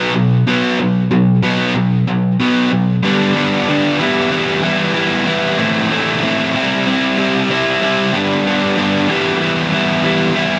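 An overdriven electric guitar carries this short rock fragment alone, its dark, picked tone double-tracked and placed up front in the mix. The mood is gritty and brooding, set in E minor at a steady 94 BPM in a straight 4/4 feel. The guitar stays in a low-to-middle range, from G2 up to E4, and a digital delay trails its notes. The playing opens on a B5 chord, then at 3.0 seconds moves into a new section that cycles through G, Em, Am and C before returning to G and Em. A moderate echo chamber reverb surrounds the sound with a lingering tail. The passage, cut from a longer piece, runs to 10.6 seconds.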